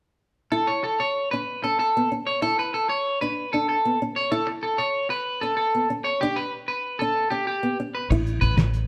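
Twangy, slightly broken-up electric guitar arpeggios ring up front over a small, fingerpicked nylon-string guitar in this joyful, danceable highlife excerpt at 126 BPM in a straight 12/8 feel, moving through A, D5 and G in A mixolydian inside a moderate stone room, until a round, foam-muted fingered bass and a cloth-damped, thuddy drum kit with a fat snare and dark cymbals arrive at 8.1 seconds on an Asus2 chord.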